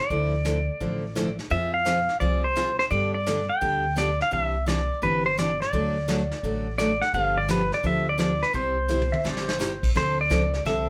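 A clean, up-front pedal steel guitar opens this cheerful, down-home western swing passage at a brisk, swung 171 BPM, its fingerpicked slide melody shaped by volume swells over a bright, full-bodied picked acoustic guitar (finger squeaks and all), a woody, growly pizzicato upright bass and a vintage brush kit with dark cymbals and a punchy kick. The chords move from Dmadd9 through Fm, G, Cadd9, D and G7 to C, and a drum fill at 8.9 seconds is joined by a brief twangy lap steel line entering at 9.1 seconds. The band plays live together in one room with moderate studio reverb, giving the sound a warm feel.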